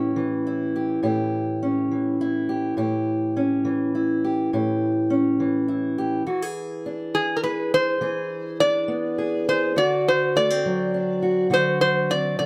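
A moderate studio room gives this gritty, soulful acoustic country blues excerpt a close, lived-in sound, with both guitars up front and the tuning sitting slightly low at A4 = 437 Hz. A boxy parlour steel-string guitar, fingerpicked, carries the accompaniment throughout in A mixolydian at a slow 69 BPM in a straight 12/8, moving from A7 to E7 at 6.3 seconds and D7 at 9.8 seconds. A metallic, nasal metal-body resonator guitar played with slide and fingerpicks sings the melody through a plate reverb, sounding only briefly at the start before returning at 7.1 seconds.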